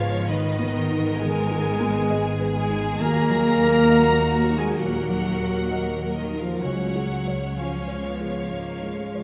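Cinematic, emotional film score for orchestra, uplifting and tender, moving at a rubato 66 BPM in 4/4 through G#m, D#m and C# across this 9.2-second fragment of a longer piece. A distant, lush violin section carries the melody with vibrato, joined by a dark solo clarinet and a second, more focused violin line. Beneath them sit a background vintage-toned grand piano, a very quiet viola section, faint mellow French horn chords, gently ringing fingerpicked harp arpeggios, and a bowed bass of cellos and expressive double basses, all bathed in a wet concert hall reverb.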